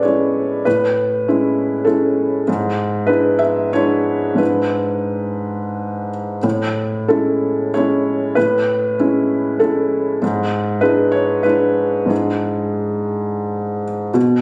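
Neoclassical minimalist piano in 3/4 with a rubato feel around 86-101 BPM, this tender, intimate fragment from a longer piece features a solo felt-muted upright piano, soft and boxy with audible action noise and sitting up front under light reverb, moving between Amaj7 and E7/G# from 0.0 to 14.4 seconds across a range from G#2 to E5, its phone-in-the-room capture lending a homely, private character.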